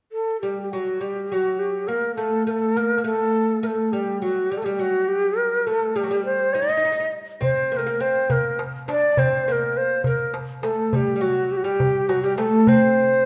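In a straight 6/8 metre, this melancholic, longing fragment from a longer Arabic maqam ensemble piece opens with an airy, tongued ney carrying the melody up front with vibrato, joined at 0.4 s by a woody, plectrum-plucked fretless oud with double strings playing a second line beneath it, before a crisp, close and dry metal-shell darbuka struck with hard hands enters at 7.4 s, all set in a moderate recital-hall reverb.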